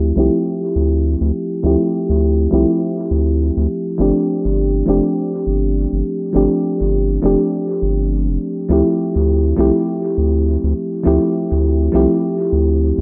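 A lightly swung 16th-note feel at 102 BPM in 4/4 carries this smooth, warm sunset chillout cut from a longer piece in D minor, where a mellow, warbling vintage FM electric piano, colored by chorus, cassette tape, a low-pass filter, tape echo and a filter sweep running through its 13 seconds, voices Dm11, G9sus4 and back to Dm11 over a round, deep analog bass, both parts sitting up front in a light reverb.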